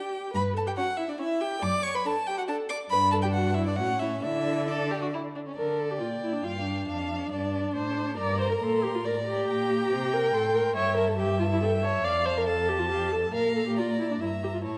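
A quick, spirited classical-period movement for string quartet at 139 BPM in 3/4, cut from a longer piece, moving from a major-leaning opening into D minor at 5.6 s. A rich, focused violin with vibrato carries the melody high above a second violin line that enters at 0.8 s with a smooth top, while the dark, soft-attacked viola sits up front with expressive portamento. The cello, warm and more distant yet also prominent, adds a sliding, expressive bass, all set in a moderate recital hall reverb.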